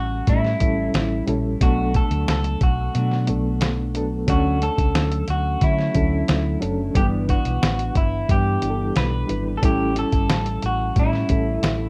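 Over a straight 4/4 pulse, a round, punchy hollow-body electric bass, a dark background electric guitar with warbly pitch drift and subtle chorus, a reedy electric piano with medium tremolo and cassette-tape coloring, and a slightly broken-up lo-fi guitar carrying the melody through tape echo and plate reverb are joined at 0.3 s by a muffled, thumpy, pitched-down sampler-style drum kit with a fat snare and hi-hat that sits up front, giving this indie and bedroom pop cut from a longer piece a nostalgic, dreamy feel in a rough home-demo mix.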